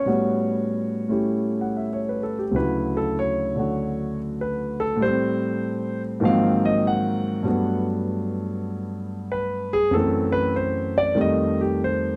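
A solo concert grand piano, intimate and up front with deep bass and audible action noise, plays this relaxed, playful fragment of jazz at 97 BPM in 4/4 with a swung, rubato feel, tuned to A4 = 438 Hz and set in light reverb, opening on A13 before moving at 2.6 seconds into a new section that drifts through Dmaj9, Am7, G#13, Gmaj9 and F#m7b5 to close on F9.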